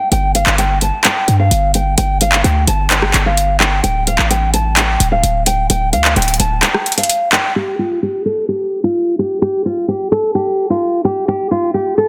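A thumb-plucked nylon-string guitar opens this melancholic, brooding trap cut, its classical tone softened by a low-pass filter and trailed by digital delay. Almost at once a booming analog drum machine with metallic hats, handclaps and rim clicks settles into a half-time feel beside a punchy, sine-heavy 808 bass, all up front in a dense, heavily limited mix with light reverb. The bass drops out at 6.6 seconds and the drums by 7.4, leaving the guitar alone from 7.6 seconds until the fragment ends.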